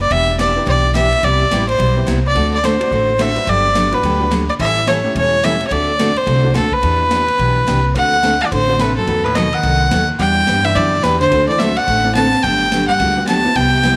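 A brisk 214 BPM swing in 4/4 drives this playful, cheerful western swing passage in G major, cut from a longer piece, with a woody pizzicato upright bass and a bright, full-bodied picked dreadnought acoustic guitar underneath a polished big-band drum kit whose dark cymbals and punchy kick sit in the background. Up front, a single bowed fiddle carries the melody with a biting, nasal, earthy tone, light vibrato and tape echo, while a detuned, jangly vintage upright piano adds very quiet honky-tonk accompaniment. From 8.0 seconds a dark, clean hollow-body electric jazz guitar joins with a fingered second line in the background, all set in light reverb and small-room ambience.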